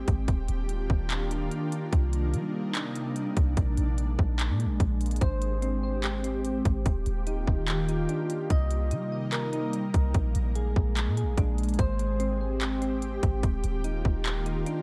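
A half-time trap groove at 146 BPM in 4/4 drives this floating, dreamy cloud-rap passage, with a hard-clipped kick, crisp hats and handclaps roughened by vintage 12-bit sampler grit, over a deep, boomy 808-style bass of clean sine tone. An ethereal, airy pad of detuned sawtooth voices sustains Ebmaj7, Cm7, Bb7 and Abmaj7 chords in Ab lydian, thickened by ensemble chorus and reverb and pumping from sidechain compression. From 5.2 s, soft, round electric-piano-like synth keys add mellow arpeggios shaded by chorus, tremolo, a filter sweep and tape echo, all set in a digital ambience.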